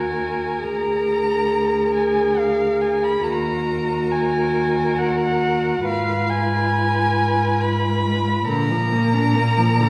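In a rubato 3/4 at 69 BPM, this elegiac, yearning slow romantic movement for string quartet in E-flat minor, cut from a longer piece and tuned to A4 = 435 Hz, sets an up-front muted violin singing the melody with vibrato over a second muted violin's smooth-topped line with portamento, a distant muted viola's accompaniment, and a close, up-front muted cello bass, all four bowed con sordino with a dark, veiled tone and heard from further back in a wet concert hall.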